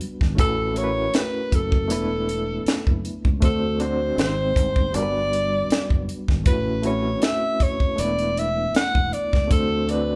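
A breathy alto saxophone leads this romantic 1970s-style soul piece at 79 BPM, its up-front jazz solo entering at 0.4 seconds with soft attacks, scooped notes and vibrato over a lightly swung 4/4 groove. Beneath it, a reedy electric piano with a fast tremolo plays clean accompaniment, while a growly, punchy fingered electric bass and a dry funk drum kit with a high-tuned snare and tight kick hold the rhythm. The chords move through A69, E7sus4, D7, G#maj7 and Gmaj7 in a warm, live-in-one-room sound with light reverb, in a short cut from a longer performance.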